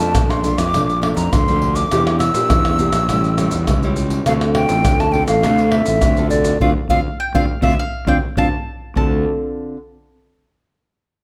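A breathy, mellow silver concert flute carries the melody in this nostalgic, yearning samba and choro fragment, its hollow, close-miked tone shaded with vibrato and tongued notes. Beneath it, a fingerpicked nylon-string guitar supplies classical-style accompaniment through a progression of Bbmaj7, Em7b5, A7 and Dm7. A fingered electric bass sits up front, direct and amped, its overdriven fuzz giving it a growly edge. Maracas, a deep surdo, pandeiro and tamborim, played with soft hands and heard in a live room, drive a straight 4/4 groove. The band hits an accent from 6.6 seconds, and at 6.9 seconds a bright, woody mandolin enters lower in the mix with a picked, double-string second line. Light reverb rounds out the sound.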